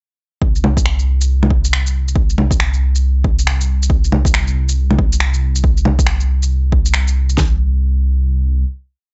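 Nocturnal and wistful, this short future garage piece moves at 138 BPM in 4/4 with a 62% sixteenth-note swing, built on a muffled two-step pattern from an overdriven deep house kit with a punchy kick and fat snare, a skittering shuffled layer of electronic shaker, low bongo and finger snaps, and a deep, rumbling detuned sawtooth bass with a beating unison tone that holds sustained root notes around C2, colored by tube saturation and sidechain pumping. The parts sit up front in a dry, gritty recording with small room ambience on the percussion, and the kit stops at 7.5 s while the bass carries the final note until 8.6 s.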